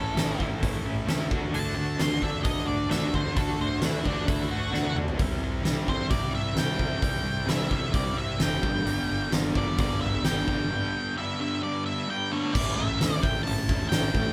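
Restless and bittersweet, this quiet-loud alternative rock excerpt opens with a dark octave-fuzz lead guitar soloing up front over a thick fuzz guitar riff, a bright, compressed fuzz guitar riff and a growly, punchy fuzz fingered electric bass. A twangy twelve-string electric guitar adds arpeggios with tremolo and analog delay until 5.2 seconds, just as a drum fill closes out its part. The huge arena drum kit, with its fat snare and boomy kick, sits up front in a live, lightly reverberant room, and after a break the bright fuzz guitar drops out at 12.5 seconds as a new section begins.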